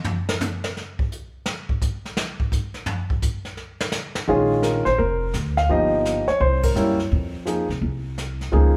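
Swinging at 170 BPM in 4/4, this late-night jazz piano trio excerpt opens with a brushed drum solo of dark cymbals and a boomy kick before an intimate grand piano with audible action noise and a woody, thumpy pizzicato upright bass enter at 4.3 s in Bb minor, moving through Bbm7, Ebadd9/G and C7b9 to a band accent at 6.6 s, all heard together in a moderately reverberant large studio room.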